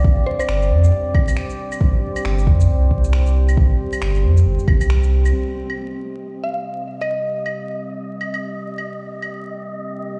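A deep, moody ambient pad, a round sub bass and an up-front kick open this wistful, melancholic future garage fragment at 136 BPM in C minor, pulsing under sidechain pumping while swung electronic shakers, claves and finger snaps tick softly and a woody, mallet-like pluck with analog delay flickers in, before the kick drops out near 4.8 seconds and the bass at 5.3 seconds, a filter sweep moves over the pad into a Cm7, and a breathy, wind-like noise texture rises at 6.6 seconds, all heard as if played through a big sound system in a bare stone room with vinyl crackle and a dulled top end.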